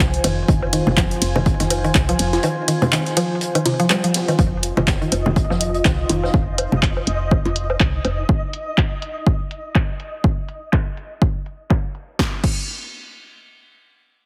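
A hypnotic, cool minimal techno excerpt in F minor opens on a held Fm chord, with a punchy, tape-toned electronic kick and an analog drum machine placed up front, its crash, ride, hi-hats, handclaps and snare low-pass filtered, while a warm, acoustic vintage kit with a high-tuned snare sits in the background. At 123 BPM with a swung 16th-note feel, a round, woody FM bass pumps against the kick beneath a deep, moody ambient pad of detuned saws and chorus, which fades out between 4.4 and 8.3 seconds. A bright, mallet-like synth pluck with chorus and digital delay carries the riff alongside overdriven, layered woodblock, congas and cowbell that enter at 0.2 seconds. From 4.8 seconds a flickering, grainy texture hovers on a single high Eb, while a filter sweep moves across the drums and the pluck is swept as well. After the other parts drop away, only the kick and drum machine continue, the chord giving way at 12.2 seconds and the drums running on to 12.6 seconds. 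The mix is heavily compressed with a radio-like squeeze, set in a lush hall reverb.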